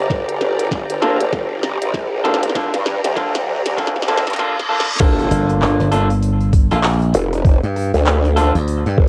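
Swung sixteenths at 98 BPM in 4/4 drive this funky, swaggering glitch hop excerpt in G minor, built on a Gm7 chord. An overdriven, pitched-down kick sits up front, thumpy and gritty, while a glitchy electronic kit adds a tiny snare, clicky hats, handclaps, rim clicks and crash cymbal with a tape-softened colour. A growling, wobbling bass with formant filtering, chorus and saturation holds the low end, and a lush, distant bowed string section with vibrato breathes under sidechain pumping until 4.4 seconds. The opening five seconds form a build-up with drum fills, a filter sweep, a riser and a reverse cymbal in the background, as an electric guitar through a small old amp plays slightly broken-up, lo-fi picked stabs through tape echo and a low-pass filter. At 5.0 seconds the drop lands with an impact, and a punchy, bright slap bass joins at 5.3 seconds. The recording has a home-cassette character with light digital ambience.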